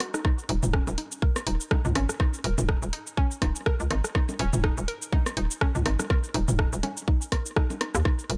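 A punchy, knocking FM bass with tube saturation and sidechain pumping sits up front from 0.5 s in this quirky, hypnotic minimal techno excerpt at 123 BPM with a swung 16th feel. It arrives after a tight electronic kick that enters at 0.2 s, and alongside a hollow, detuned square-wave pluck riff with chorus, dub echo and pumping, bright garage hats with cabasa and rim click, and small-room bongos, toms and rim clicks sent through delay, all set in a digital ambience.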